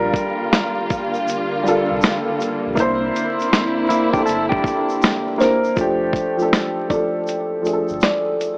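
A dry, gritty recording with vinyl crackle, a small-speaker tone and a touch of small-room reverb frames this short lo-fi hip hop passage at 80 BPM in 4/4, swung on the sixteenths, with a nostalgic, cosy mood. Up front, a dark, worn upright piano with audible action noise and slight detuning plays muffled accompaniment over Bb6, C9 and F69 chords, while a thumpy, compressed sampler-style drum kit of kick, snare and hi-hat sits beside it. A deep sine sub bass with an octave hums in the background, a grainy tube shaker adds soft texture, and a close, bowed string section with vibrato holds warm, filtered chords until 5.7 seconds. A clean, fingered electric guitar enters at 3.9 seconds with a warbly pitch drift and tape echo for a brief second line. From 5.4 seconds, a hollow, woody kalimba with a bright thumbnail pluck carries the melody in a narrow high range to the end of the passage.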